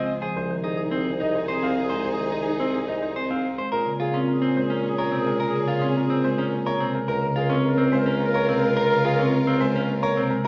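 This excerpt of minimalist classical pattern music opens with a clear concert grand piano carrying the melody, its intimate tone showing audible action noise and long sustain. Beside it sit a mellow clarinet playing a second line in the background, a rich chamber string section holding focused, bowed chords with vibrato, a dark, picked electric guitar tracing arpeggios up front, and a bassoon with light vibrato and a smooth top anchoring the bass. A woody marimba with rosewood bars joins at 0.2 s as a forward accompaniment. The mood is hypnotic and urgent at 107 BPM in a straight 3/4, and the harmony moves from Ab/C into Bb minor at 3.7 s, with Bbm7 giving way to Db6. A wet recital hall reverb surrounds the ensemble, and the top end is softened.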